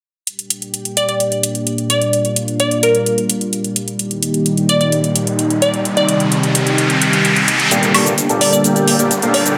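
A straight 4/4 pulse of overdriven, metallic electronic hi-hat, shaker and woodblock drives this euphoric, emotional festival progressive house passage at 129 BPM in G minor, as an up-front, warbling unison pad holds sustained chords with chorus, a glassy wavetable pluck carries the melody through tape echo from 1.0 s, a riser enters at 5.3 s, and at 7.7 s a huge, compressed supersaw riff under a filter sweep arrives with a very quiet detuned saw bass for the build-up, the whole mix sitting in a wet scoring-stage reverb.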